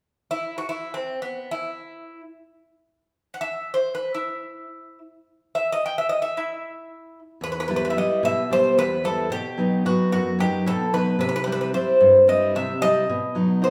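Bathed in a wet, large studio reverb, this short cut from a longer Greek folk performance sounds like players sharing one room. In free time and E harmonic minor, the bouzouki opens alone at 0.3 s, carrying a brooding, bittersweet melody up front with a metallic ring from its double strings, some of them octave-doubled. At 7.4 s a picked steel-string acoustic guitar joins with warm accompaniment, its finger squeak audible as the harmony moves through Em, B and C.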